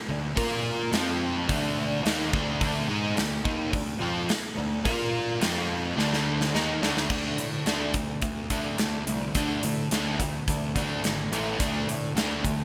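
A straight, driving hard rock groove in four pulls a heavy short excerpt from a longer piece along, led by an up-front big rock drum kit with a punchy kick, bright cymbals and gated reverb in a pumping stone room, which rolls through a fill from 6.0 to 7.1 seconds into the second section. A hollow-body overdriven semi-hollow guitar with ensemble chorus and a dark, sludgy distorted guitar set further back play the riff together over a warm fuzz bass that is picked and punchy. Chords move from power chords into D minor and back to power chords, all inside a bright 1980s-style digital production with plate reverb.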